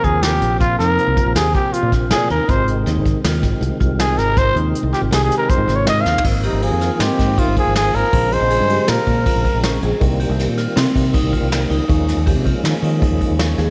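A growling, breathy trumpet opens this brooding, driving progressive instrumental in 5/4 at 160 BPM, soloing up front over fat, lightly overdriven tonewheel organ with chorus vibrato and slow rotary speaker, dark ringing vibraphone arpeggios with slapback echo, a round fingered electric bass and a soft brush kit. The harmony moves through Bbsus2, Ab, Ab69 and Bbm7 chords before settling on Cm7 and Eb7sus4. A veiled cup-muted trombone joins in the background at 6.4 seconds as a second line, and both horns fall away at 9.8 seconds, while the rhythm section carries on in a small room with moderate echo-chamber reverb.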